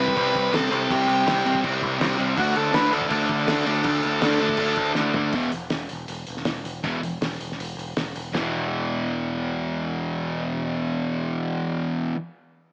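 A buzzy, overdriven combo organ opens this swaggering, gritty garage rock fragment together with a double-tracked fuzz guitar riff and a growling picked electric bass. The vintage organ's brief melody, coloured by phaser and tape echo, drops out at 4.9 seconds, leaving the bright, compressed fuzz guitar up front to carry the riff through C5, D5 and E5 power chords. Beneath it, the bass sits lower in the mix, roughened by overdrive and tube saturation. The cloth-damped drum kit sounds muffled and lo-fi, with a fat snare, tight kick and dark cymbals; a fill at 5.0 seconds leads into a new section, and the drums stop at 8.4 seconds. Light small-room reverb and a small-speaker quality frame the recording, which is cut from a longer piece.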